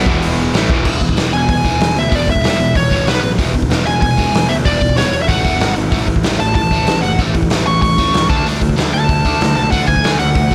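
Punk rock at 189 BPM in E mixolydian, rebellious and rowdy, cut from a longer piece: a compressed distorted guitar riff runs throughout, joined for the first 0.9 s by a double-tracked distorted guitar and a raw overdriven garage guitar, over a growly fuzz-laden picked bass and a gritty, punchy garage drum kit with crash, hi-hat and medium-tuned snare, while from 1.3 s a smooth overdriven lead guitar with digital delay sings the melody up front, all in a dry sound moving through E, B, A and D chords.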